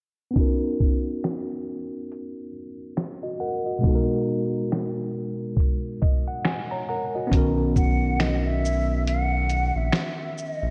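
A swung lo-fi hip hop groove at 69 BPM in B major carries this mellow, nostalgic excerpt, as muffled, pitched-down sampler drums with a thumpy kick, snaps and shaker wear gritty 12-bit texture beneath a worn, slightly out-of-tune tine electric piano moving from Bmaj7 to G#m9/B, with a piano fill and filter sweep leading to 7.3 seconds, where a smooth sawtooth synth bass enters, and a breathy, hollow jazz flute with tape echo follows at 7.8 seconds, all floating in a dreamy, reverb-soaked hall.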